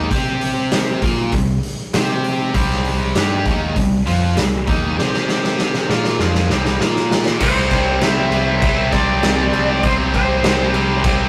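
A rough rehearsal-room sound with tube saturation and a moderate stone-room reverb frames this powerful, anthemic hard rock excerpt, cut from a longer piece, at 99 BPM in a straight 4/4. Up front, a raw garage drum kit drives the groove with a punchy kick, a medium-tuned snare, hi-hat and crash, its gritty, saturated tone carrying a pumping room and a rolled-off top, and it rolls into a drum fill from 5.0 to 7.4 seconds. Beneath it, a growly, amped electric bass plays with a picked attack, while two bright picked guitars, one overdriven and one tight and distorted, play the riff in the background over the opening power chords. At 7.4 seconds the music shifts to a new section on a C chord, where a double-tracked, high-gain guitar thickens the riff and a smooth overdriven lead guitar sings a short warm melody until 10.7 seconds.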